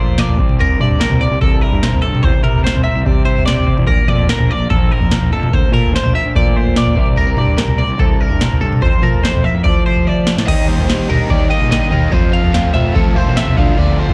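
A wistful, sunny math rock and midwest emo piece at 146 BPM in 4/4 opens with two clean, compressed twelve-string electric guitars and a fuzz-laden fingered bass, joined at once by a booming analog drum machine. One twelve-string picks a twangy accompaniment through analog chorus, while the other spins picked arpeggios higher up, set in the background with spring reverb and analog delay. Underneath, the round, overdriven bass holds the low end as the drums sit up front with a deep kick, a crisp snare, crash cymbal and toms re-recorded in a large room. The harmony moves through C7, Bbmaj7 and Fmaj7, and a drum fill at 10.1 seconds leads into a new passage at 10.5 seconds. There a biting, double-tracked overdriven guitar riff enters over Ebmaj7, Fmaj7 and Dm7. The dry home cassette recording lends a homespun intimacy, and the cut ends mid-flow as part of a longer piece.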